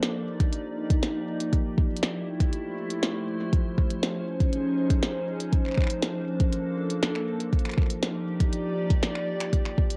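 A glitchy kit of finger snaps, clicky hi-hats and a tiny snare sets up a straight 120 BPM IDM groove from the start, and a deep electronic kick joins a moment later, all re-recorded in a small room and sitting up front. Over it, a glassy, ethereal FM pad with slow attack and long release sustains lush major-ninth chords, moving from Ebmaj9 through Fmaj9, Dbmaj9 and Bbmaj9 before returning home, coloured by ensemble chorus, its own reverb and cassette tape. The mood is playful and glitchy, with light room reverb and the soft grain of a home cassette recording across this short cut from a longer piece.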